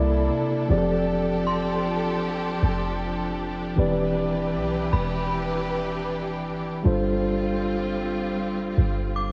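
R&B with a moody, sensual, swung feel, this excerpt layers an up-front, mellow tine electric piano over lush bowed strings with vibrato, a deep, boomy 808-style bass, and a chiming, inharmonic FM synth chime that warbles through chorus and analog delay in the background, all wrapped in light reverb with the soft grain of a home cassette recording as the chords move from C13 through F69 and Cmaj9/E to G9sus4.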